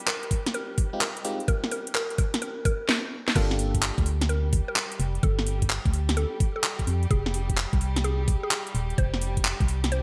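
UK garage two-step in G minor at 128 BPM, skippy and soulful with a swung 16th feel: a dark, vibrato-laden violin section holds pumping chords beneath a woody, warbling mallet-like synth pluck melody, a glassy FM electric piano adds phased, delayed stabs until 4.1 seconds, and a garage kit of cracking snare, metallic hats, claps and crash with gated reverb rides alongside a knocking, up-front electronic kick, building through a drum fill into the drop at 3.4 seconds, where a hollow, organ-like FM bass enters under Gm9 and Fsus2 chords in a bright 1980s-style digital mix.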